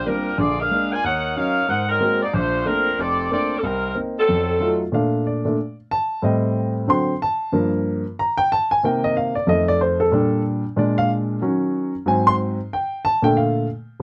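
Swinging at a brisk 185 BPM in 4/4 with a lilting eighth-note feel, this energetic Bb major jazz excerpt opens with a tight, up-front saxophone section carrying the melody with light vibrato, a soft attack and a vintage character over intimate grand piano accompaniment, whose audible action noise and short sustain carry on as the piano takes a solo from 4.9 seconds through 14.0 seconds, all set in a moderate booth ambience with dark, warm production.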